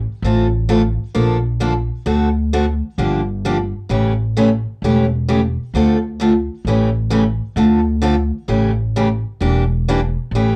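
A bright, boxy steel-string parlour guitar sits up front, entering at 0.2 s with picked accompaniment through a bittersweet, fiery D minor progression that moves from Fmaj7/A and Bbmaj7 through D7 and Gm7 into repeated Dm7–A7 turns before landing on Em7b5. Beneath it, a woody, thumpy upright bass with gut strings plays pizzicato from the very start, driving this swung jazz manouche excerpt at 131 BPM in 4/4. The sound carries a moderate club reverb and the worn, warbling pitch drift of old cassette tape.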